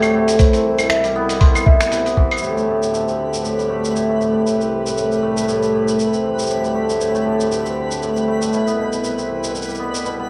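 Warm and playful, this short folktronica excerpt moves at 118 BPM in 4/4 with a gentle swing on the sixteenths. An up-front cimbalom carries the piece with hammered, shimmering arpeggios that pass through a low-pass filter and tape echo, while a reedy, breathing pedal harmonium holds sustained chords beneath it, moving from Cmaj7 through D7sus4 and Am7/C. A muffled, lo-fi sampler-style kit of claves, finger snaps, hi-hat and shaker runs throughout, and a thumpy, compressed electronic kick sits up front from 0.4 to 2.3 seconds. In the background, a delicate, tinkling music box adds a brief second line with tape echo between 0.4 and 1.9 seconds. From 3.1 seconds a faint, twinkling granular texture with a slow attack and bright octave-up shimmer drifts in, all set in a dark production with moderate studio reverb.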